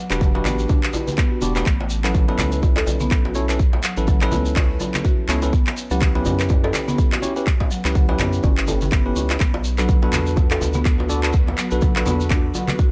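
A buzzing, woody marimba opens this hypnotic afro house passage in B minor at 124 BPM, its arpeggios pumping with sidechain, dub echo and a filter sweep, as a bell-like tine electric piano adds bright stabs and a round, deep analog bass anchors the swung 4/4 groove. A punchy, up-front electronic kick and tape-warm electronic handclaps sit in a small room, while ringing congas and a medium-tuned djembe patter in the background alongside a grainy shekere. At 9.7 seconds an ethereal, warbling pad slips in with very quiet sustained chords.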